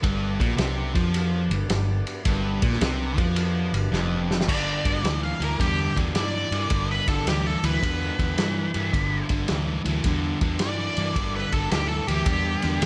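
Blues rock in the power-trio mold with a southern rock streak, this gritty, swaggering cut moves at 108 BPM in 4/4 with a swung eighth-note feel, centered on G mixolydian and resting on a G chord. An overdriven, double-tracked electric guitar drives a low, picked riff up front, joined by a round, punchy foam-muted bass with a dark, amped tone. The vintage drum kit sounds small-roomed and lo-fi, with a fat snare, tight kick, dark cymbals and a rolled-off top, using crash, ride, snare and kick. Behind them, a thick, overdriven tonewheel organ holds sustained chords through a slow rotary speaker until 4.5 seconds, when a drum fill hands off to the next section. From there an octave-fuzz lead guitar takes a distorted, wah-colored solo with plate reverb, sitting up front over the band until the fragment ends at 12.9 seconds.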